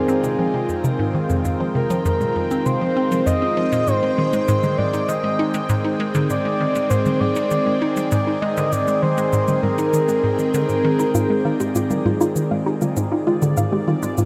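A vast, wet reverb wraps this 14.3-second excerpt of expansive, hypnotic sequencer-driven space music at 99 BPM, where a bouncy, hollow square pluck riff and a swirling phased analog pad sit up front over Fm7 moving to Ab, a breathy flute-like synth lead carries the melody until 11.1 s before a soft, round pluck takes over with arpeggios, and a bright bubbling stepped-filter texture in the background and tape-warm electronic cabasa and toms fade in.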